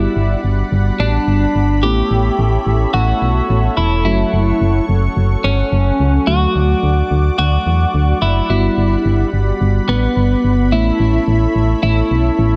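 A clean, picked twelve-string electric guitar carries the melody up front, its warm tone shimmering with vibrato and trailing delay across this short pop excerpt in a straight 4/4. Underneath, a punchy, round FM bass sits forward in the mix, its fast attack decaying into a dark, digital thump. An FM electric piano layered with a soft pad plays accompaniment in the background, dreamy and full-bodied, colored by chorus and tremolo. A lush unison pad of detuned sawtooth and square waves holds airy, sustained chords with a soft attack and its own chorus shimmer. The harmony moves from Gmaj7 through Aadd9, F#m and D before returning to Gmaj7 at 8.5 seconds, giving the bright yet wistful mood a gentle lift. Light reverb and digital ambience wrap the dark production, and all four parts play from start to finish.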